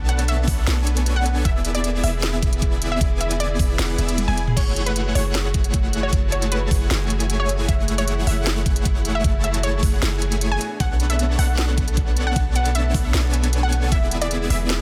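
Riding a half-time groove, this emotional, lush future bass passage pairs an overdriven, knocking electronic kick with a trap kit of sharp snare, crisp hats, crash, ride and toms, plus a deep, boomy 808-style bass sitting up front and pumping against the sidechain. A huge, detuned supersaw riff and a punchy unison pluck melody, coloured by cassette tape and delay, carry the lead over a fingerpicked concert harp with tape echo in the background and a very quiet, woody string section holding dark sustained chords. The kick drops out at 3.8 seconds, and a drum fill from 4.2 seconds leads it back in at 4.6 seconds, landing on the home minor chord in a dense, heavily limited, nearly dry mix.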